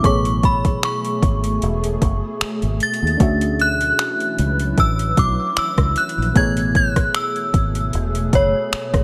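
Contemporary R&B with a tender, smooth swing, where an up-front synth chime rings out the melody through ensemble chorus and delay over a mellow, chorused FM electric piano, an ethereal pad with slow attack and built-in reverb holding sustained chords, a dark, round fingered electric bass, and an overdriven drum kit of finger snaps, metallic hi-hat, soft kick and rim click, all moving between Amaj9 and Dmaj9 in light digital ambience.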